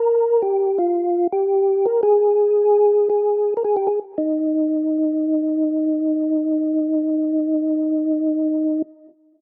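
Greasy and swinging, this short jazz cut features a percussive tonewheel organ playing solo from 0.0 to 8.8 seconds, sitting up front with a mellow, flute-like tone and a clean second-harmonic percussion click. A slow rotary speaker, chorus vibrato and slapback echo color the organ, while light reverb gives the open-air recording a touch of space. The phrase unfolds in two parts, the second beginning at 4.2 seconds, over a swung eighth-note feel.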